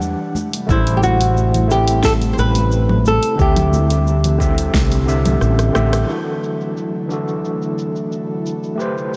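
Warm and wistful, this 89 BPM sunset chillout piece sets a gritty, barky overdriven tine electric piano with fast tremolo and tape echo over an airy, breathy chorused pad in the background, while a growly, up-front fretless electric bass holds the low end until 6.0 seconds, a punchy electronic kick and a deep house kit with a fat snare and hats, both low-pass filtered, keep a straight 4/4 pulse alongside very quiet ringing congas, and a fingerpicked flamenco guitar carries the melody with tape echo from 0.7 to 5.4 seconds before a drum fill and band accent lead into a new section at 6.1 seconds, all under light reverb.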